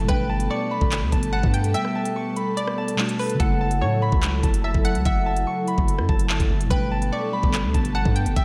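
Soaked in plate reverb and digital ambience, this dreamy, dark drill excerpt has an ominous, half-time feel. A ringing, fingerpicked Celtic harp carries the high melody through an analog delay. Muted, warbling felt-like synth keys with a vintage tinge sit in the background under an airy, breathy pad that holds mellow sustained chords moving from Gadd9 to F#m7 and back. A hollow, bouncy square pluck adds a bright second line with chorus and delay. Underneath, a long, deep 808-style bass decays beneath an up-front electronic drum kit of knocking kick, crisp hi-hats, handclaps and rim clicks, with the kick dropping out between 1.7 and 3.4 seconds.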